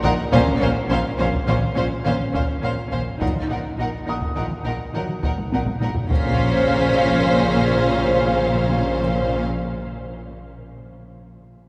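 A straight 5/4 pulse at 104 BPM drives this ominous, uneasy suspense cue in Bb minor, cut from a longer film score, with close, hard-stick taiko and dry, articulate timpani sitting behind the bowed strings, and a taiko fill at 5.4 seconds. A warm violin section carries the melody over a focused second violin line, distant violas, background cellos and rich double basses, while a mellow French horn section holds sustained chords and a very quiet felt-muted upright piano adds soft, intimate high texture with audible action noise until 6.1 seconds. At that point the timpani return and a dark, woody high violin section joins in the background, the whole cue set in a wet cathedral reverb.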